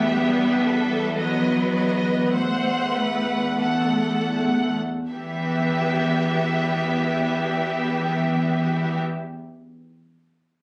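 Classical slow romantic movement for string orchestra, elegiac and melancholic, in a rubato triple metre that slows down over the first 5.1 seconds before a new passage begins. A lush violin section with rich vibrato carries the melody over a second violin line with a soft attack and smooth top, while a focused, close cello section and a distant, even double bass section hold the bass and a clear chamber viola section sits in the background. Cut from a longer piece, it sounds captured on a phone in the room, with club reverb and lossy compression artefacts.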